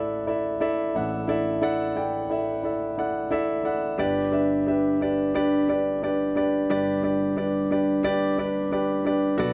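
A lightly reverberant room frames a dark, mellow grand piano placed up front, close enough that the noise of its action is audible beneath the notes. This short pop excerpt moves at 89 BPM in a straight 4/4, its mood uplifting and warm. The piano plays solo for the full 9.5 seconds, ranging from G1 up to G5. Its tone is smooth and intimate with a vintage character, and a digital delay adds echoes to its sound. The harmony opens on an Asus4 chord before settling onto G at 4.0 seconds, in a tuning set slightly below standard pitch at A4 = 439 Hz.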